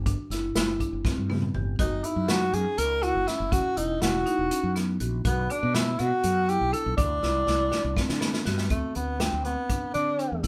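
Progressive instrumental band music in a driving, bright 7/8, heard as a short cut from a longer piece, with the players sounding live together in a small room. A mellow fretless electric bass anchors the low end with a dark, round, direct tone, while a marimba struck with hard mallets spins arpeggios in a woody, percussive, close-miked voice. An unplugged acoustic drum kit, played with bundle sticks, adds a punchy kick, a medium-tuned snare, hi-hat and toms, sounding roomy and distant yet sitting up front, with fills from 1.1 to 1.8 seconds and again from 7.2 to 8.7 seconds. A breathy tenor saxophone enters at 1.8 seconds and carries the melody in an intimate, whispered jazz style, using subtone, soft attacks, vibrato and scooped notes. From 8.7 seconds the harmony shifts and the saxophone moves into a solo, staying up front over the band as the clip breaks off.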